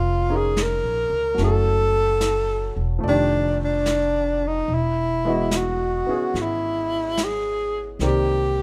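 A slow swung 4/4 jazz ballad at 73 BPM, this melancholic, intimate excerpt opens with a breathy, subtoned tenor saxophone carrying the melody up front with vibrato and scooped notes, over a clear, slightly worn concert grand piano with deep bass and a woody pizzicato upright bass. A vintage brush kit enters at 0.6 s, its brushed snare and hi-hat warm and rolled-off in a small room, as the harmony drifts from Bbm7 through F13 and Emaj9 to Cm9. The dry sound keeps the saxophone and bass near the listener.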